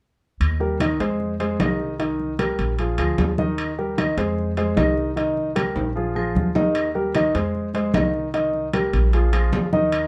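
This sunny, lively Afro-Cuban jazz excerpt in Eb major opens at 0.4 seconds with a dark, thumpy pizzicato upright bass on gut strings, woody claves sounding distant as if in a large room, bright, damped congas played with soft hands in the background, and ringing metal-shell timbales with a vintage, band-limited character. At 0.6 seconds a clear baby grand piano joins up front, intimate and natural with audible action noise, comping through a repeating Eb, Fm7, Cm7 progression that resolves first to Bb7 and later to Bb5, at a straight 151 BPM in 4/4. A drum fill arrives at 5.8 seconds, and moderate studio reverb gives the groove a sense of space.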